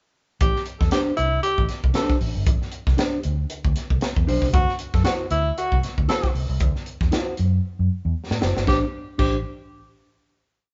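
At 0.4 s a breathy tenor saxophone with light vibrato and scooped notes plays short jazz-style riffs up front over a vintage foam-muted fingered bass riff anchored on the downbeat and a crisp fusion kit with a punchy kick, a high-tuned snare and ghost notes, joined at 0.9 s by a mellow, clean electric guitar playing clipped funk chords through harmonic tremolo, in a hypnotic, driving A dorian funk groove at 116 BPM with a swung sixteenth feel that moves from Am11 to D9 before a drum fill at 7.6 s leads into a final Am7 chord, heard as a band playing live in one room with light reverb and a dull, rolled-off top.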